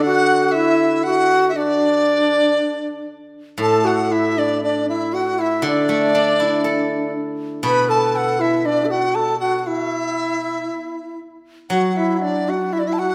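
A wet scoring-stage reverb with a 1.7-second tail surrounds this short cut from a longer Chinese traditional chamber piece, pastoral and festive in mood. It moves in a free, rubato 2/4 at around 59 BPM in a D gong mode, and a new section begins at 3.6 seconds. Up front, the bamboo dizi carries the melody with a breathy, mellow, straight tone and soft attack, its buzzing membrane giving a slightly unsteady edge. Beneath it, a low bamboo xiao, end-blown and reedy, sings a second line with a brilliant, vibrato-laden tone. A steel-string zither played with fingerpicks supplies silvery, ringing accompaniment, sitting lower in the balance. Each of the three parts sounds from the opening through to 13.1 seconds.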